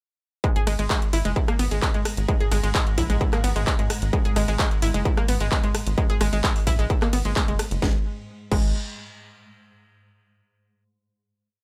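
Dark and industrial, this driving peak-time techno piece at 130 BPM pounds on a distorted, overdriven four-on-the-floor kick, with an overdriven drum kit of cracking snare, claps, rim, pumping hats, ride and crash, a tight, punchy galloping sixteenth-note sequencer bass, a round 16-step analog pluck riff roughened by 12-bit sampler grit, chorus and tape echo, and a swarming, detuned drone entering at 1.2 seconds in the background before the drop gives way to a final chord at 7.8 seconds.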